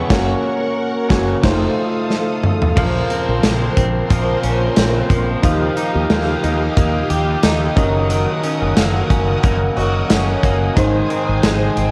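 A big, up-front rock drum kit with a punchy kick, bright cymbals and tambourine drives this dramatic, moody 1980s-style pop excerpt in Bb minor at 90 BPM, opening on a band accent capped by a drum fill that ends at 2.8 seconds, as a round fretless bass, mellow chorused synth keys, a warbling vintage string machine on violas, a scooped clean guitar riff with analog delay, and a distorted guitar in the background fill a moderate, lush hall reverb with the character of a cassette home recording.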